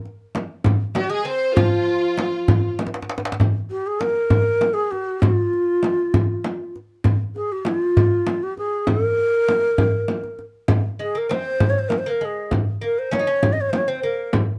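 Melancholic and soulful, this Persian modal ensemble piece in 6/8 pairs a deep, saturated tombak and a small-room frame drum with a breathy, reedy ney that carries the melody up front with vibrato and plate reverb, while a delicate fingerpicked lute and a lush bowed violin section add brief second lines at the opening, the lute returning at 11.0 s, and a drum fill at 2.8 s leads into the longer second section of this portion cut from a longer piece.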